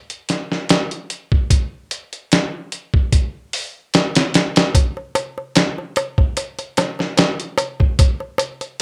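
A gritty, compressed sampler-style drum kit with a thumpy kick, fat snare and hi-hat sits up front in a large-room sound, driving this dark, brooding trip hop excerpt at 74 BPM in 4/4 with a light swing on the 16ths, while a close, dry clay-shell darbuka with natural skin joins at 4.8 s, all within a rough home-demo mix touched by moderate studio reverb.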